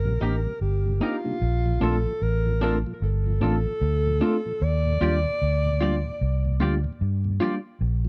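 Smooth and romantic, this short reggae excerpt sets a mellow alto saxophone lead, with subtone, vibrato and scooped notes and trailed by tape echo, over a round, punchy, foam-muted electric bass that sits up front. A clean tine electric piano, a very quiet flute-like tonewheel organ with key click and rotary speaker, and twangy, compressed electric guitar stabs with subtle chorus fill out the accompaniment as the chords move from Cm7 to Bbmaj7 at 1.4 seconds and Ebmaj9 at 4.6 seconds. The sound is dry and close, like a 1970s studio recording.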